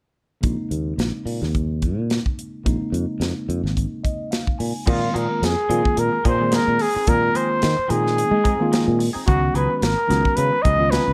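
A lightly swung 16th-note groove at 109 BPM drives this slick, intense jazz fusion excerpt in Bb minor, with a tight, dry funk kit and a growly, punchy fretless bass up front beneath a clean tine electric piano voicing Bbm11 chords, which plays a fill from 3.8 to 4.9 seconds. At 4.9 seconds a breathy, whispered trumpet takes the solo melody with light vibrato and plate reverb, as the harmony moves to Bb9sus4, while a twangy, compressed electric guitar adds picked stabs through lush chorus in the background. The chords shift to Db9sus4 at 9.3 seconds, and the mix sits in a light reverb.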